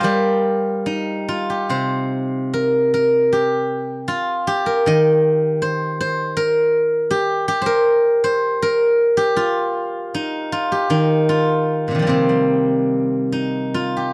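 The beats fall unevenly in a loose, rubato four, giving this short excerpt from a longer piece a freely breathing pulse. It is Chinese traditional music for solo plucked strings, with a longing yet elegant mood. A single steel-string zither carries everything from 0.0 to 14.1 s, played with fingerpicks and reaching from Bb2 up to C6. Its acoustic tone is silvery and ringing, placed up front in the mix. The sound is dry and close, in the manner of a 1970s studio recording, with only light reverb around the instrument.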